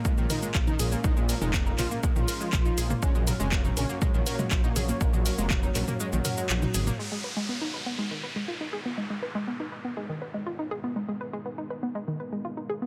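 A menacing, detuned saw bass carries this cinematic, melancholic melodic techno cut in G# dorian at 121 BPM, its saturated unison tone pumping against the beat with a filter swell. A round, bright analog pluck spins arpeggios throughout with chorus, cassette tape colour and digital delay. Against a deep, moody pad that hangs in the background, a smooth synth lead sings an expressive melody with vibrato, ensemble chorus and tape echo, shadowed by a very quiet, airy supersaw line. A punchy, tape-warm kick and drum machine with low-passed handclaps, hi-hat, shaker and toms drive the opening drop over A#m7 and F# chords. The kick drops out at 6.0 seconds ahead of a band accent and drum fill. From 7.0 seconds the lead, supersaw, bass and drums are gone, leaving the pluck and pad under filter sweeps on a G#madd9 chord while an up-front downlifter falls through a dense, heavily limited digital ambience.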